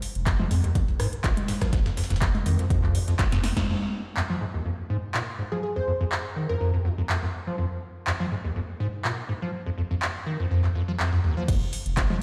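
A swung 123 BPM acid house groove in 4/4, this trippy, raw excerpt rides an electro analog drum machine with metallic hats, punchy snare, congas, rim clicks and handclaps, while a squelchy, resonant square-wave acid bass with overdrive and chorus drives the F minor pentatonic riff throughout, an overdriven electronic kick, a deep round pumping bass and a gritty sampler-style kit in the background drop out by 3.7 seconds and return at 11.5 seconds, and a catchy detuned plucky lead with cassette-tape color and delay flashes briefly at 5.5 seconds, all bathed in a lush hall reverb heard through a big sound system in a bare room.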